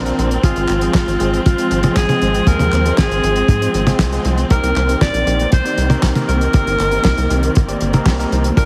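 A bright, forceful alto saxophone carries the melody from 0.4 seconds, its vibrato-laden pop-style line sitting in a punchy upper register and trailed by a digital delay. Beneath it, this danceable, nostalgic slice of Italo disco rides a straight 4/4 pulse, with a dry, tight kick and a damped 70s drum kit whose fat snare, handclaps, hi-hat and toms sound mid-forward and close. A tight sequencer bass drives the low end with a sawtooth-and-square filter pluck, fast in attack yet mellow as each note decays. An overdriven tine electric piano adds barky, gritty stabs through a combo amp, while a lush symphonic string section holds soft-attacked, expressive bowed chords, moving from Fm/Ab to Cm7 at 4.5 seconds. Light studio reverb, heavy radio-style compression and a layer of vinyl crackle give this short cut from a longer piece a vintage broadcast feel.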